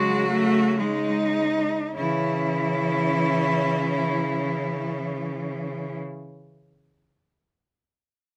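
A bowed cello carries the yearning melody up front, its rich, vibrato-laden tone sounding focused yet distant, in this solemn classical fragment for cello ensemble in 3/4 with a rubato feel. Beneath it, a second cello sings a close counterline from the background, a third fills in the accompaniment, and a smooth, even bass cello plays a low C#3, the group set in a moderate studio reverb. The opening slows over its first 2.0 seconds before moving onto a C# minor chord as the second section begins.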